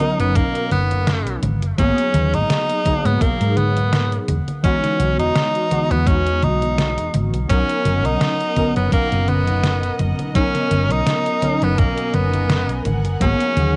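A lightly swung 4/4 groove of a thumpy electronic kick and a detuned 8-bit drum machine's congas, hi-hat and snare, both with cassette grit, carries this dreamy, nostalgic vaporwave piece, where a round, dark hollow-body electric bass and warbling, chorused lo-fi synth keys sit under an edgy, up-front tenor saxophone with scooped notes, vibrato, analog delay and plate reverb, until a very quiet, biting studio string section joins with sustained chords at 7.5 seconds.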